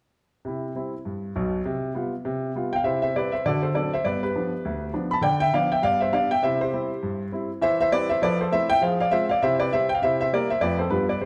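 Playful and swinging, this short cut from a longer stride piano piece in C major moves at 201 BPM on swung eighths, with a solo grand piano sitting up front, its boxy, intimate tone and audible action noise set in a moderate recital-hall reverb as it plays from 0.5 to 11.3 seconds through changes such as D7, Dm69, Fmaj7 and Fm before landing on G7.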